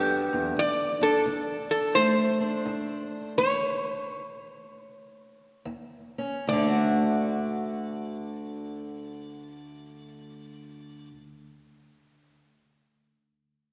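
A metallic, nasal resonator slide guitar, played with fingerpicks, carries the melody up front over a dark, parlour-style fingerpicked steel-string acoustic guitar in this rollicking, swaggering acoustic country blues fragment in D major. It sits at 71-88 BPM in a swung 4/4, slowing from 0.6 seconds and breaking into a full stop from 3.4 to 5.7 seconds before settling back onto a D chord. A lush church reverb with a long tail surrounds the two guitars, giving the duo a resonant concert-hall glow.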